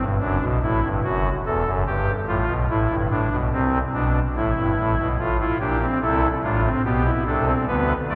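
A straight 4/4 pulse at 72 BPM carries this elegant, joyful short excerpt from a baroque-style four-part fugue in F major, played solo on a pipe organ's soft reed oboe stop with romantic voicing and tremulant, sitting up front across a range from E1 to D5, bathed in a wet church reverb with a 3.5-second decay within a dark, warm production as the harmony moves from D/F# through G7 and C to F/A and G/B before the cut at 8.2 seconds.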